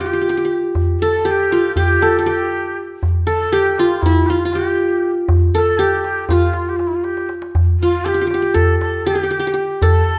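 Turkish makam ensemble music in a 9/8 metre with a longing, hypnotic mood, heard in a short section cut from a longer piece. The up-front, plectrum-plucked qanun carries the melody with a bright-edged, triple-string shimmer, while a breathy, reedy ney with vibrato and a soft attack traces a second line. A deep, clay-shelled darbuka played with hard hands sits close and dry, adding a fill at 7.1 seconds, and the ensemble is set in a moderate recital hall reverb.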